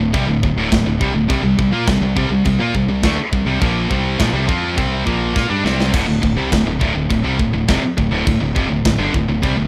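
A bright, high-gain distorted guitar sits up front, driving an aggressive, relentless heavy metal riff in D minor at 103 BPM in a straight 4/4. Behind it, a second heavy high-gain guitar plays a riff further back, while a very quiet, double-tracked fuzz guitar adds a warm layer beneath, all three spanning D2 to F4. A growling fingered electric bass, overdriven and punchy with a direct, amped edge, holds down the low end from D1 to Bb2. The tight metal drum kit, up front and mid-forward with a big-room sound, pairs a tight kick and medium-tuned snare with bright china and crash cymbals, and a drum fill arrives at 5.4 seconds. The chords move from D5 to C5 at 1.3 seconds before settling on D minor at 5.9 seconds, in a dry, rough home demo mix cut from a longer piece.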